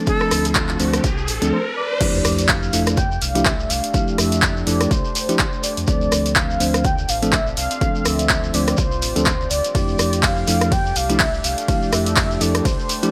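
Vinyl crackle and light digital ambience frame this relaxed deep house cut, which runs at 124 BPM in F major with a swung 16th-note feel, moving between Dm7 and Fmaj13. A riser climbs to a drop at 2.0 seconds, where a sub drop hits; a silky string machine and a breathy, bright jazz flute with digital delay are heard only in the opening moments. Throughout, an overdriven electronic kick and up-front, overdriven analog drum-machine claps, hats, rim clicks, ride and crash drive the groove with a grainy shekere, under bell-like tine electric piano stabs and a deep sine sub bass that both pump with sidechain, while a velvety, detuned synth lead with chorus and delay sings above a moody, warbling ambient pad that enters at 2.9 seconds.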